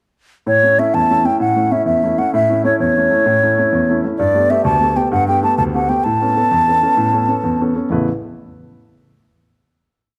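A lively, bright celtic folk piece in 12/8, where a warm baby grand piano sets an oompah accompaniment of bass notes and chord figures with short sustain, moving from A to Gadd9 at 4.2 seconds and on to Aadd9. Up front and close-miked, a baroque flute carries a motif-based melody in period phrases, its woody, airy tone shaped by vibrato, crisp attacks and expressive playing. The flute finishes at 7.6 seconds, and the piano's final chord rings into a moderate recital hall reverb, captured with detailed microphones.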